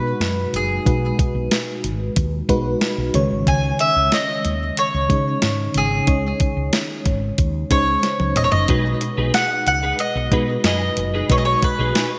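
A bright, double-strung mandolin carries the melody up front with a digital delay trailing its picked notes in this urgent, moody 1980s-style pop excerpt at 92 BPM, moving from B6 to C#sus2 and back. Beneath it, an FM electric piano with tremolo and phaser adds mellow, decaying chords, a woody fretless bass sits round and punchy, and a clean 12-bit drum machine with a thumpy kick and toms drives a straight 4/4 beat, with a fill at 8.0 seconds. At 8.7 seconds a quiet, twangy twelve-string electric guitar enters with a chorused riff, all set in a lush hall reverb and a glossy digital sheen.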